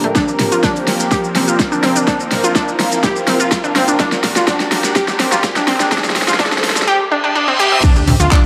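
Dreamy and bittersweet, this progressive house excerpt at 125 BPM is a build-up in which a bright, detuned unison pluck plays arpeggios with dub echo and a filter sweep, over a lush, thick pad holding sustained chords from C7sus4 until the pad stops at 6.9 seconds, both parts pumping to the sidechain. A punchy layered electronic kick drives an overdriven pop kit with a fat snare, handclaps, shaker, ride and crash, plus a drum fill, while a very quiet soul kit, tape-toned electronic toms and congas and a background riser sit further back in a digital room reverb. A reverse cymbal leads to an impact at 7.8 seconds on a Dm chord, and moments later a plucky sawtooth analog bass briefly sounds a low D.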